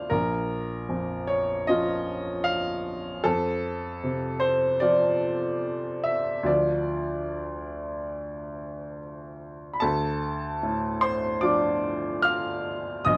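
A clear upright piano plays alone and up front in this wistful, intimate neoclassical minimalist piece, its woody, vintage tone smooth and ringing with long sustain across a range from deep bass to high treble. The rubato feel lets the harmony drift from Bbm to F to Dm, and the opening passage returns at 9.8 s. A wet studio reverb adds a short, roomy glow to this brief portion cut from a longer work.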